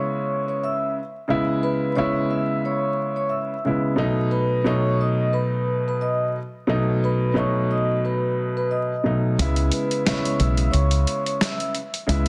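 A ringing, metallic vibraphone played with soft mallets carries the melody of this reflective yet tough boom-bap hip-hop excerpt, its slow motor vibrato and boxy small-room character colored by a digital delay. Beneath it, a dark upright piano sits up front with a woody, vintage tone and a cassette-tape treatment, moving from C#m7 to B7 in C# minor at 89 BPM with a lightly swung 4/4 feel. At 9.4 seconds, a deep dub fingered electric bass arrives with a round, foam-muted sound, alongside a gritty, compressed sampler-style drum kit playing hi-hat and a medium-tuned snare as the harmony returns to C#m7. The vibraphone stops at 11.7 seconds, leaving the piano, bass and drums to finish. Light small-room reverb and vinyl crackle sit over a dense, heavily limited modern master.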